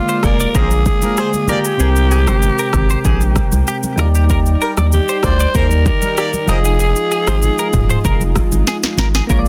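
Smooth and mellow, this afrobeats passage in F dorian moves at a straight 96 BPM in 4/4 and is cut from a longer piece. A raspy, gritty alto saxophone carries the melody between F4 and C5 with vibrato and a touch of digital delay, and a warm pop-style horn section plays a second line until 6.6 seconds. Round, gentle electric-piano-like synth keys with chorus and tremolo, plus an airy, breathy pad with chorus sitting in the background, fill out the harmony over Bb7, Abmaj7, Ebmaj7 and Fm7. A bright, twangy clean electric guitar picks a compressed riff through analog chorus and digital delay, while a thick, saturated sub bass sits up front. The electronic afro-pop drum kit pairs a deep kick and a sharp, softly clipped snare with rim clicks, shaker and toms, adding a drum fill at 8.7 seconds, and very quiet, damped congas add acoustic color in a small room. The mix is dry, dense and heavily limited in a modern style.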